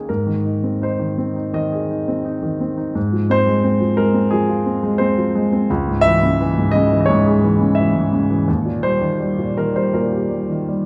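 Bathed in the wet reverb of a recital hall, this short, relaxed and hopeful fragment of lyrical classical solo piano has a warm, natural, up-front baby grand moving freely with rubato around 86 BPM in 4/4, its Ab major harmonies passing through Abadd9, Fm/Ab, Dbm and Eb across a range from Db2 to Fb5 before it is cut off at 10.9 seconds.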